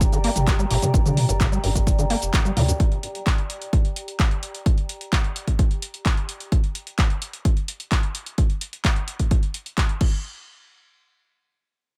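A straight 4/4 groove at 129 BPM drives this trippy, raw acid house excerpt in G minor, anchored by a punchy analog kick drum that sits up front from the start to 10.1 seconds, joined by a drum machine carrying crash cymbal, handclaps, hi-hat, shaker and toms, both re-recorded in a small room. Over a single G minor chord, a squelchy, resonant square-wave acid bass enters at 0.1 seconds, its gritty tone pushed through tube saturation and tape echo while a filter sweep moves across its first few seconds. Beneath it, a round sine sub bass with tube saturation and sidechain pumping shares a filter sweep before both basses stop at 2.7 seconds. A warbling, lo-fi pad built from detuned square and triangle waves with ring modulation drifts between G4 and Bb5, its slow attack, chorus, built-in reverb and sidechain pumping lending a dark, nostalgic haze until it ends at 6.5 seconds. The drums carry on under light reverb until the harmony drops away at 10.0 seconds, leading into a brief closing passage.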